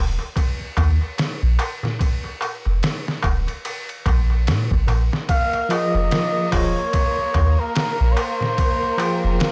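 A cup-muted trumpet carries the melody from 5.3 seconds, its breathy, raspy jazz tone veiled and growling with light vibrato and trailed by tape echo. This brooding, cinematic trip hop excerpt moves at 73 BPM in 4/4 with a swung sixteenth-note feel. A deep, round 808-style bass opens at 0.0 seconds, dark and up front with transformer saturation. A crisp metal-shelled darbuka enters at 0.2 seconds with vintage hand percussion, and a muffled, pitched-down sampler drum kit follows at 0.4 seconds with a thumpy kick, a medium-tuned snare, hi-hat and ride, overdriven and compressed. The lush violin section arrives with the trumpet and holds smooth bowed chords, a bell-like tine electric piano with tremolo follows at 5.7 seconds, and the harmony drifts through Ebsus2, Fm7 and Fm in a dry, gritty cassette sound.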